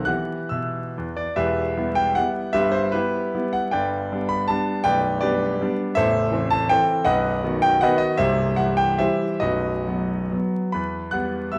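A bright, brilliant concert grand piano plays solo throughout this capricious, nostalgic romantic dance in triple time, its dotted rhythms and rubato phrasing moving from E minor through G, A minor, B and C before settling back on E minor at 10.7 seconds, the up-front, natural tone reaching into deep bass within a wet recital hall reverb and a worn, warbling old-tape haze of cassette drift and vinyl crackle in this short cut from a longer piece.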